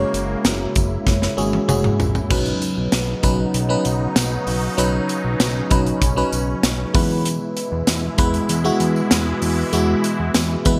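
Punchy, up-front studio drums with gated reverb drive this glossy, romantic 1980s-style pop excerpt at 97 BPM in B major, rolling through a fill from 1.1 to 2.3 seconds, while a glassy, bell-like FM electric piano with chorus and phaser, an airy, evolving resonant pad, a fat saturated analog bass and a jingly tambourine in the background fill out the bright digital production as the chords move from F#add9 to Badd9 and E.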